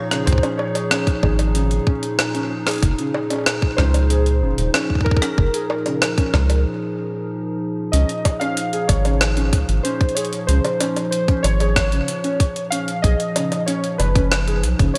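Over a straight 4/4 groove at 94 BPM, a tight, up-front electronic kick and a gritty, pitched-up jungle sampler-style kit of bongos, hi-hat and rim click with overdrive and delay drive this playful, intricate IDM excerpt in Db major, where a rubbery, bouncy square bass anchors warbling lo-fi synth keys carrying the melody, a nostalgic tape-like pad with sidechain pumping holding sustained chords, and a soft, felt-muted upright piano tracing arpeggios in the background, all set in a lush hall reverb with bright 1980s-style digital production, a brief break at 6.7 seconds, and a move from Dbmaj7 at 7.9 seconds to Cbmaj7 at 13.0 seconds.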